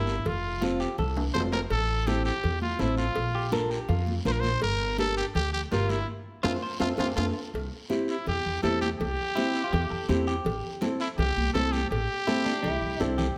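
A growling trumpet, a fingerpicked nylon-string guitar and a woody pizzicato upright bass open this joyful, sunny cumbia excerpt together, cut from a longer piece. The trumpet carries the melody up front, brilliant and gritty with a light vibrato in a pop-style solo, while the bass sits forward with a growly steel-string bite and the classical guitar gives full-bodied acoustic accompaniment. Behind them, raspy guiro, bright high-tuned congas struck with hard hands, and ringing cowbell and timbales keep the percussion in the background, with drum fills and a full-band accent marking the turn into a new passage at 7.5 s. A clean, picked electric guitar adds a compressed second line from 0.6 s, drops out, then returns at 6.4 s. The harmony moves through F, Am, Bb and Gm before settling on C and Am7, all set in a moderate large-studio reverb.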